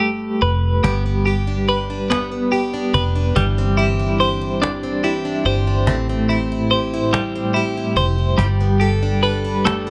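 Lightly reverberant, this excerpt from a romantic, heartfelt pop ballad moves in a slow 6/8 at 48 BPM, tuned slightly flat to A4 = 438 Hz. A bright, twangy, compressed twelve-string electric guitar with tremolo sits up front beside a dark, round, foam-muted vintage fingered bass, and at 0.8 seconds a picked steel-string acoustic guitar joins with concert-style arpeggios and audible finger squeak, alongside a woody cajon played with hard hands and faint snares. The harmony drifts from Gadd9 through G, Cadd9/G and Am7 before settling back on Gadd9 at 8.4 seconds.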